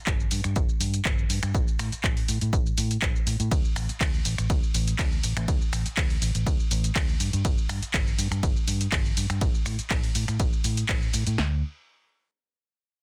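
A feel-good, joyful filtered disco house excerpt at 122 BPM opens on a drop led by a punchy analog drum machine whose up-front kick and snare drive a straight 4/4, joined by finger snaps, handclaps, hi-hat, ride cymbal and shaker that pump against the sidechain, while a dark, round, foam-muted vintage fingered electric bass, also pumping, runs from G1 to A2 until about 11.6 seconds, all set in digital ambience with a dense, heavily limited modern master.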